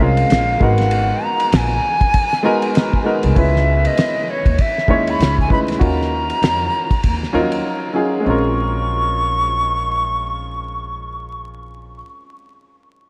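Jazz-hop hip hop at 98 BPM with a swung 16th-note feel and a nocturnal, cool mood, where a breathy, chiffy flute with vibrato and delay carries the melody over woody upright piano chords and a growly pizzicato upright bass, while a cloth-damped, thuddy drum kit with a fat snare and dark cymbals plays from 0.2 to 7.6 seconds before a brief silence until 8.3 seconds, the dreamy mix soaked in cathedral reverb and vinyl crackle.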